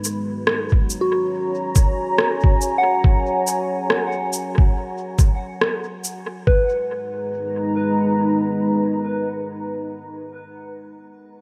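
A swung 4/4 pulse at 70 BPM opens this spacious, deep ambient dub excerpt in G# minor, with an overdriven electronic cabasa and rim click carrying dub echo until 6.2 seconds, and a muffled, thumpy, pitched-down electronic kick sitting up front from 0.7 seconds. Beneath them, a moody, detuned sawtooth pad with a sub octave holds sustained chords, treated with chorus and its own reverb. The harmony moves from F# to G# minor at 6.5 seconds, while a soft FM synth bell plays mellow arpeggios coloured by phaser, 12-bit sampler grit, dub echo and a filter sweep.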